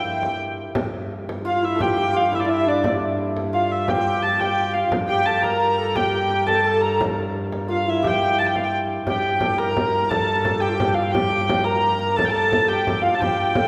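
A straight 6/8 pulse at 116 BPM on the dotted quarter drives this ancient-sounding medieval dance in G dorian, a passage cut from a longer piece. Up front, a dark, woody hurdy-gurdy carries the melody between D5 and Bb5, its wheel-bowed, keyed tone smooth at the top. Beneath it a hammered dulcimer plays a second line in the background, bright and shimmering, while a distant viola da gamba holds a low G2 drone with light vibrato and a fretted, ringing resonance. A small frame drum with a bright small-room sound enters at 0.2 s, and at 1.4 s a close-miked bass recorder joins the second line, airy and tongued with a breathy chiff and vibrato. The music moves into a new section at 9.1 s, and the whole ensemble sits in a wet church reverb with a 2.5-second decay, giving it the space of a church or concert hall.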